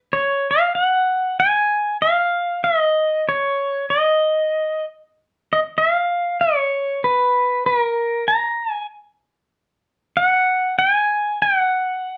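A lone electric pedal steel guitar opens this languid, sunny Hawaiian excerpt, playing solo from 0.1 to 12.2 seconds. Picked with fingerpicks and moved by slide, its clean, twangy voice blooms through volume swells between A#4 and A#5 in F# major. The tempo is an unhurried 96 BPM in 4/4, with a gentle swing on the eighth notes that keeps the phrasing relaxed. Compression holds the guitar steady and up front in the mix. A wet studio reverb with a short 0.5-second tail surrounds it, giving the feel of a live room.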